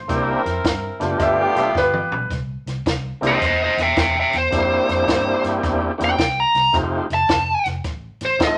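A swung shuffle in 4/4 at 108 BPM sets up this swaggering, laid-back electric blues in C mixolydian, heard as a short cut from a longer piece. It opens with a woody, slightly detuned upright piano playing a short solo with clipped sustain, joined from 0.1 seconds by up-front, bright saxophone section stabs with light vibrato and a smooth top, over chords moving from C7 to G7. A compact cocktail kit with a high-tuned snare and punchy kick plays a fill just before 2.3 seconds, when the piano and horns drop out and the second section begins. Underneath, a dark, foam-muted fingered bass gives a round, amped bottom, while a thick tonewheel organ sits up front through a slow rotary speaker with light overdrive. From 3.3 seconds a smooth overdriven lead guitar, picked and bright, carries the melody in the upper register, with the harmony shifting to F7 at 6.7 seconds, all set in a moderate studio reverb.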